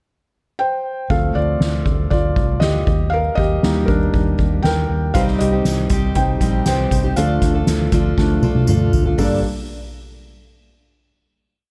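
A straight 4/4 pulse at 119 BPM drives this short, earnest piano-driven pop piece in G minor, opening with a pickup bar where the felt-muted upright piano enters at 0.6 seconds with eighth-note chords in drop-2 voicings, its intimate tone carrying audible action noise. At 1.1 seconds the vintage muted fingered electric bass and the soft-mallet drum kit join, the bass dark, foam-muted and punchy with driving eighth notes, the kit up front with a boomy kick and fat snare on a driving pop backbeat. Through the bridge the piano takes a felt solo over chords moving from Dm7 through Eb and Cm to Dm. At 5.1 seconds a fingerpicked steel-string acoustic guitar adds a full-bodied riff in open chord shapes, while a jingly tambourine sits close and dry in the background on the backbeat. A drum fill leads into the closing Gmadd9 chord, all set in light reverb and studio ambience.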